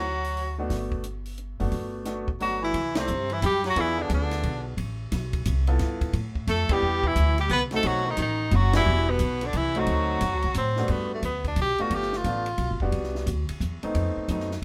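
A swinging three-beat waltz feel drives this short cut from a small-group jazz piece, its eighth notes lilting with a playful, sophisticated air. An edgy, forceful tenor saxophone carries the melody up front with vibrato, while a bright baritone saxophone with scooped notes and vibrato adds a second line until about 10.8 seconds, and the tenor plays on until 12.8 seconds. A woody, thumpy pizzicato upright bass sits prominently underneath, and a dry cocktail drum kit with dark cymbals, a high-tuned snare and a punchy kick works across hi-hat, ride, snare and kick. A clear baby grand piano accompanies with long sustain and audible action noise, giving an intimate closeness. The harmony moves through extended chords and altered dominants, and the band hits accents together at 2.9 seconds and at a couple of later points, all within a moderate club reverb.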